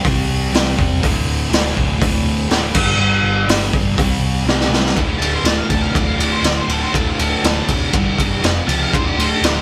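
A straight, driving 4/4 groove opens this swaggering, raw garage rock clip, cut from a longer piece, with the band heard playing live together in one room under light reverb. The acoustic drum kit sits up front, gritty and saturated with a punchy kick, medium-tuned snare, hi-hat, ride and crash, and a rolled-off top. A bright, double-tracked fuzz guitar drives the riff through C, D5, G5 and C5 chords, while a round, hollow-body short-scale bass, picked and amped, holds the low end beneath it. A drum fill at 4.5 seconds leads into the second section, where the riff returns to D5. At 5.2 seconds a dark octave-fuzz lead guitar enters with a picked solo that rides over the changes through G5, F5 and back to D5 until the clip ends.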